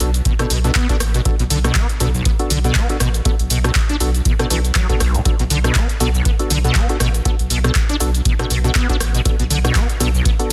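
Trippy and gritty, this 120 BPM acid house excerpt in B minor pentatonic swings its 16ths over a single Bm7 chord: a round sine sub bass pumps beneath a squelchy, resonant sawtooth acid riff with overdrive, 12-bit grit and tape echo that enters at 0.3 seconds alongside a dry, deep kick, while an overdriven analog drum machine re-recorded in a large room drives handclaps, hi-hat, rim click and shaker, and hollow, percussive organ stabs carry chorus, cassette tape color and tape echo, all within digital ambience and a dense, heavily limited modern master.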